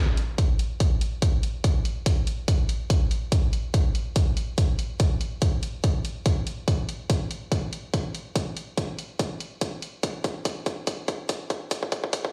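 A punchy, layered electronic kick drum sits up front from 0.4 seconds, alongside a fainter, layered electronic hi-hat that enters slightly earlier at 0.2 seconds, both re-recorded in a large room for an aggressive, chaotic piece of heavy wobble dubstep at 143 BPM with a swung, half-time feel. The whole passage, cut from a longer piece, is a build-up under a filter sweep, with a drum fill arriving at 6.7 seconds. The mix carries the character of a big sound system in a bare room, with large studio reverb and a high-pass filter thinning the low end.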